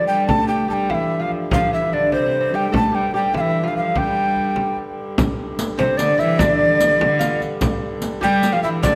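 Medieval dance in a straight 6/8, festive and ancient in mood, cut from a longer piece, with a breathy, mellow tenor recorder carrying the melody up front, its tongued notes showing chiff and an unsteady vibrato. A delicate fingerpicked lute sits in the background and a rich, reedy viola da gamba adds close gut-string bowing as second lines over a dark, nasal hurdy-gurdy drone, while a deep frame drum struck with hard hands comes in at 0.3 s. The riq's bright jingles join at 5.2 s as the music moves into a new section, all placed in a moderate scoring-stage reverb.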